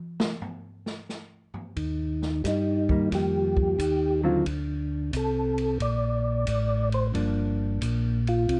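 Soul jazz organ trio in G minor at a swung 89 BPM, bluesy and late-night: an acoustic drum kit with dark cymbals and a boomy kick plays alone until 1.8 s, when a smooth tonewheel organ bass with key click and slow rotary speaker enters. At 2.5 s an up-front, flute-like percussive organ melody joins with chorus vibrato, and at 2.9 s a dark, fingered hollow-body electric guitar adds accompaniment, all in a dark, lightly reverberant mix.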